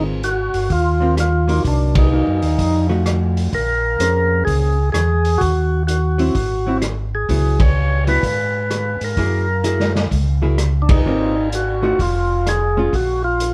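Soul jazz organ trio music, soulful and greasy, swinging at 128 BPM in 4/4 in this 13.5-second excerpt cut from a longer piece. A percussive tonewheel organ carries the melody with a full, clean tone, key click and second-harmonic percussion through a slow rotary speaker. A second, mellow tonewheel organ supplies a round, dark bass line, also with key click and slow rotary, sitting up front in the mix. A hollow-body archtop guitar, miked and amplified, adds picked, compressed accompaniment until 12.9 seconds. The vintage drum kit enters at 0.2 seconds with hi-hat, kick, ride, rim click and snare, sounding muffled and lo-fi with dark cymbals, a tight kick and a rolled-off top. The band plays live in one room with light reverb, hitting shared accents, and the harmony moves from Ab69 through Cm7b5, F7b9 and Gb9 before landing on Bb5.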